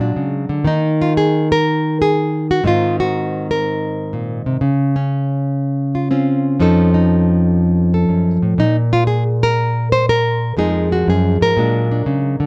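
Solo jazz with a smoky, swinging lilt, carried by a fingerpicked nylon-string guitar sitting up front with an acoustic, classical tone as it moves through altered dominant and lush major-seventh harmony, with a chordless passage at 8.6 seconds, set in moderate club reverb and a dark, warm production.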